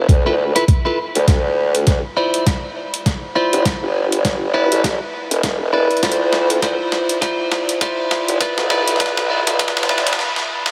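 Swaggering and gritty, this glitch hop passage rolls along on a swung sixteenth-note feel and is cut from a longer piece. A saturated, wobbling formant-sweep bass built from pulse and sine waves sits up front with chorus and overdrive, while a thumpy electronic kick and a sampler-style boom bap kit of hi-hat and medium-tuned snare add a compressed, gritty punch re-recorded in a large room. Bright, clean electric guitar stabs enter at 0.3 seconds, pumping against the sidechain and trailing tape echo over chords that move from Fmaj7#11 through Dm9 and Em7, back to Dm9 and on to G6. The whole stretch is a build-up under a filter sweep, with a drum fill running from 1.3 seconds before everything halts at 10.2 seconds for a final fill. An enormous ambient reverb with an 8-second tail soaks the mix, giving the grit a hazy, dreamlike glow.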